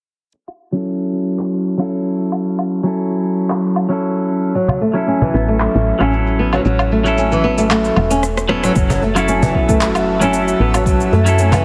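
A fingerpicked flamenco guitar, dark and up front with audible finger squeak, stands out in this earthy, warm organic downtempo excerpt at 114 BPM in F# minor, its arpeggios arriving at 4.5 seconds through a low-pass filter and delay. Before it, overdriven electronic cabasa, woodblock, handclaps and rim click set a lightly swung groove, joined by a twangy, clean electric guitar playing compressed, picked accompaniment with delay and sidechain pumping. A snappy acoustic cajon with snares and a round, woody FM bass follow soon after, the bass pumping under the harmony as it moves from F#m7 to A6. A filter sweep runs through the opening stretch and a drum fill leads to 8.8 seconds, where a deep, tape-warm electronic kick drum enters and the harmony returns to F#m7. An airy, breathy pad with chorus and phaser then enters softly in the background. The whole mix carries light reverb and a heavily compressed, radio-like tone.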